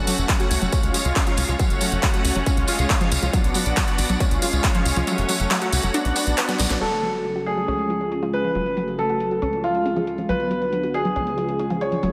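A clear, open concert grand piano steps up front at 6.8 seconds with a tape-echoed second line in this bittersweet, emotional uplifting trance excerpt in F# harmonic minor at 138 BPM, where a filtered supersaw swell of soft-attack sustained chords and a tight, dark sequencer bass pump under sidechain while a chorused analog pluck arpeggio sweeps through its filter, a punchy up-front electronic kick drops out at 4.7 seconds before a drum fill, and a big-room kit with a huge snare and metallic hats plays alongside a jingly vintage tambourine, all soaked in a dreamy hall reverb over F#m, C# and Bm chords.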